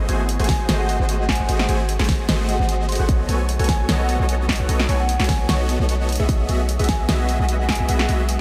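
A deep, boomy 808-style bass with a sine body and a noise layer sits up front and pumps against the sidechain beneath huge, lush, detuned supersaw chords that carry a bright riff through delay, moving from G#7b9 to B9 and Emaj9/B. This dreamy, bittersweet future bass fragment runs at 150 BPM in a half-time feel with a light 16th-note swing. A punchy electronic kick enters at 0.5 s alongside a woody marimba melody set in the background, while a fat snare and hi-hats fill out the drums and a very quiet, ethereal pad drifts underneath, the whole mix soaked in a huge ambient reverb.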